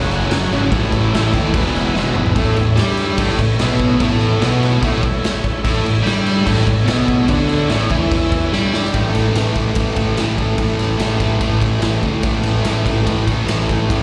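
Garage rock at 146 BPM in A major, raw and swaggering, with a double-tracked fuzz guitar riff up front, its distortion and slapback echo spanning E2 to G4, over overdriven fingered bass and a gritty, saturated drum kit with a punchy kick and medium-tuned snare in a pumping stone room. A buzzy vintage combo organ holds clean sustained chords with heavy vibrato until 8.9 s, when the band lands on an A5 chord, with drum fills marking the changes at 1.9 s and 8.5 s. The cut sounds like a live gig heard through the venue's PA, with a recital hall reverb around it.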